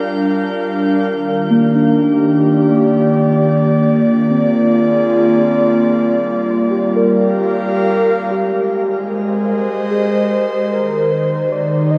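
Drenched in a huge, dark reverb, this serene, spacious ambient excerpt in 3/4 sets an airy, breathy pad holding sustained chords up front against muted, felt-like synth keys playing arpeggios through chorus, shimmer reverb and tape echo, while a faint glassy texture of drifting overtones sits in the background until 1.1 s and a velvety, vibrato-tinged synth lead carries the melody from 10.7 s.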